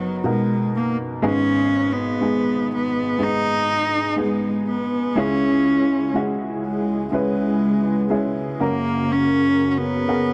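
A rich, bowed cello carries the melody in this short pop ballad, played by one player up close with smooth, even vibrato that sounds longing and heartbroken. Beneath it, an upright piano with a woody, slightly detuned vintage character provides accompaniment, its long sustain sitting up front alongside the cello. At 5.2 seconds a soft-attack analog pad enters with sustained sawtooth chords, its detuned tone shimmering through chorus and tremolo. The harmony moves from Bmaj7/F# to G#m, then to C#m and F#, giving the passage a yearning feel. Light reverb and a dark, warm production wrap the slow, straight 4/4 pulse, and the clip is cut from a longer piece.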